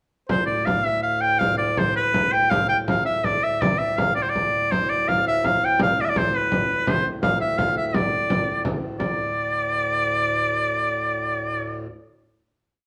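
A bright, vibrato-laden shawm sings a solo modal melody with ornaments up front from the start, its smooth top riding over a reedy, breathing harmonium drone and a deep, vintage-sounding frame drum in a mysterious, driving medieval dance in 6/8 that speeds up as the band plays together in a reverberant large room, the drum dropping out at 9.2 seconds as a final chord closes the whole piece.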